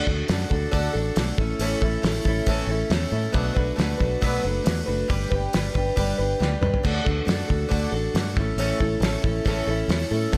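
A bright, shimmering picked twelve-string acoustic guitar sits up front in this short folk rock and heartland rock excerpt, its octave-doubled chords moving through D, A, Bm7 and G with an open-road feel. Beneath it, a round, foam-muted fingered electric bass and a cloth-damped, thuddy drum kit, with a fat snare, tight kick and dark cymbals, keep a straight 4/4 pulse. A drum fill at 6.4 seconds leads back to D, all within a small room ambience.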